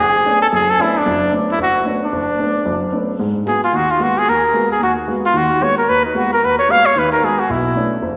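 Searching and hypnotic, this short jazz passage is cut from a longer piece and swings its eighth notes in 4/4. A breathy trumpet carries the melody up front, its punchy, present tone shaded with vibrato, and it takes a solo from 3.2 seconds until it stops at 7.9 seconds. Beneath it, a warm baby grand piano provides accompaniment, sounding intimate and natural with short sustain and audible action noise from the instrument. The harmony moves from Bm9 to G#m9, then returns to Bm9 at 7.5 seconds. A wet scoring-stage reverb and the resonance of a church or concert hall give the two players a spacious, lingering setting.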